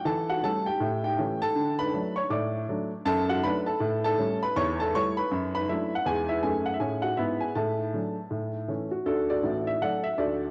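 A woody upright piano opens at 0.0 s, playing solo in a playful, swinging stride jazz style with a lilting swung eighth-note feel. Its tone is up front and close, with a short sustain and the character of cassette tape, spanning from deep bass notes to bright upper registers. A moderate, lush hall reverb surrounds it, lending the homespun recording a sense of space. The harmony moves through dominant and tonic chords such as A7, D and D/F#, touching on E before settling back through D/A and A. At 9.1 s a new section begins on a D chord, and the fragment breaks off at 10.5 s, cut from a longer piece.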